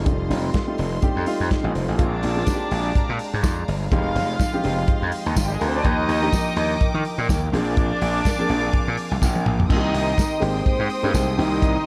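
A lightly reverberant studio sound frames this glamorous, driving disco cut at 125 BPM, taken from a longer piece, with a swung sixteenth feel in 4/4 moving through chords such as F7, Bb7, Fm7 and Ebmaj7. An up-front, dry soul drum kit with a tight kick and rolled-off top pairs with a gritty, overdriven electric slap bass, while a dark, mellow baby grand piano plays accompaniment with a fill from 1.0 to 2.0 seconds and a lush string section holds sustained chords in the background. From 2.0 seconds a reedy, gut-toned violin section with light vibrato adds a period-style second line, a jingly, close tambourine joins shortly after, and a drum fill at 9.2 seconds leads into the closing Cm7 and Abmaj7 passage.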